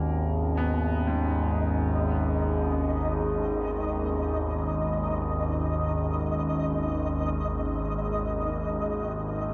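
An overtone-sweeping drone sits up front in this ominous, cavernous dark ambient excerpt, its sawtooth and sine tones resonant with moving overtones, rising on a slow attack and held with chorus and its own reverb. Above it, a deep, moody pad holds sustained chords in a vintage, warbling voice, thickened by unison and a sub octave, with chorus and built-in reverb. A bright grand piano traces brilliant, natural arpeggios in its low register, trailed by a diffuse ambient delay. From 0.4 s a flickering, grainy texture joins on a single high note, detuned and mellow, with granular character and built-in reverb. The whole excerpt floats in free time over a G#madd9 chord, bathed in a huge, wet reverb with a dark, warm production that lets the sound hang in the air for its 9.5 seconds.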